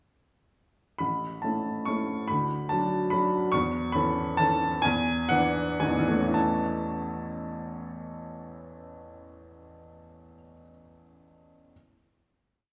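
A clear, woody upright piano plays this brief, playful classical waltz in A major on its own from 1.0 to 11.7 seconds, pairing a polished single-line melody with a waltz bass in 3/4. The rubato tempo moves between 106 and 153 BPM and slows from 2.9 to 6.4 seconds as the harmony passes through A, Bm/D, A/E and E7 before settling on a final A chord. The piano sits up front and present, with sparkling detail framed by a wet recital hall reverb and small room ambience.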